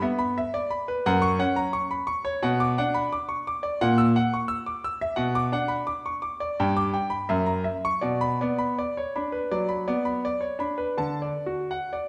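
Radiant and serene, this short passage cut from a longer work is a baroque-style suite movement for solo grand piano in B minor, moving at roughly 80-88 BPM in 4/4 with a flexible, rubato feel. The concert grand plays alone for the full 12.1 seconds, sitting up front with a brilliant, natural, slightly worn character and a deep bass, spanning from F#2 up to E6. The harmony opens on a lone E5 before settling through F#, Bm and F#7/A#, then passes through G and F#7 back to Bm, arriving on D at 11.0 s as the opening material begins again. A wet recital hall reverb surrounds the instrument. Overall, the production leans dark, a gentle counterweight to the piano's brightness.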